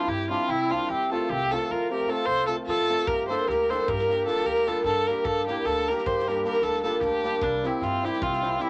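A bowed viola, nasal and boxy with vibrato and placed up front, leads this festive, virtuosic Balkan wedding-band excerpt, carrying the melody from D4 to C5 in a brisk 11/8 at 304 BPM in eighths with a straight feel. Beneath it a distant, roomy clarinet with a soft attack plays a second line in classical style, while a hammered dulcimer adds shimmering, ringing accompaniment in the same middle range. A pizzicato upright bass with a woody tone and steel strings enters at 0.1 seconds, holding the low end between C2 and G2. At 3.1 seconds an acoustic soul drum kit joins in the background, with a tight kick, a medium-tuned snare and a rolled-off top. The harmony moves from C to F, settles on G minor, and returns to C near the end, all heard in a moderate small room whose short reverb keeps the ensemble close and lively.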